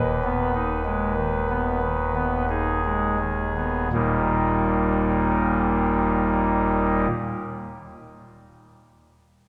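A solo pipe organ on a soft reed stop, with an oboe-like voice, baroque voicing and chiff, opens this reverent, majestic chorale-style fragment in a slow, rubato triple metre, sitting up front and spanning deep pedal tones to its upper register. The pace slows through the first 3.9 seconds over an Abm/Eb chord before settling onto an Eb resolution, and the organ stops at 7.1 seconds. A wet church reverb with a long 3.3-second tail carries the sound on after the playing ends, in this passage cut from a longer piece.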